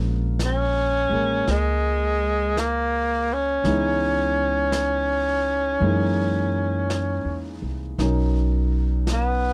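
A slow swung 4/4 at 55 BPM sets the pace for this intimate, smoky jazz ballad, cut from a longer piece and heard here for 9.5 seconds. A grand piano with a warm, natural tone and a woody pizzicato upright bass on steel strings open together at 0.0 s, the bass sitting up front. A vintage brush drum kit enters at 0.4 s, quiet and dark with a rolled-off top, working brushed snare and hi-hat in a small room. At 0.5 s a breathy tenor saxophone takes the solo melody, the loudest part, played in a whispered subtone with vibrato, soft attacks and scooped notes, up front yet carrying a distant, roomy air. The harmony moves from A#m7 through C#m9 and F#13 to Bmaj7, captured as a dry, close 1970s-style studio recording with little reverb.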